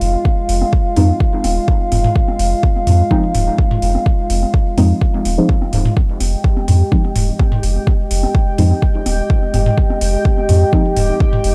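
Over a straight 126 BPM pulse, this meditative dub techno excerpt in F minor rests on a held Fm7, with an overdriven, up-front kick, metallic hats, a clean sine sub bass and a moody, nasal analog pad breathing under sidechain pumping, while soft, warbling chord stabs and background congas and toms trail dub echo, and a resonant, bubbling stepped-filter texture joins at 6.2 seconds, all captured as a dry, gritty hardware recording.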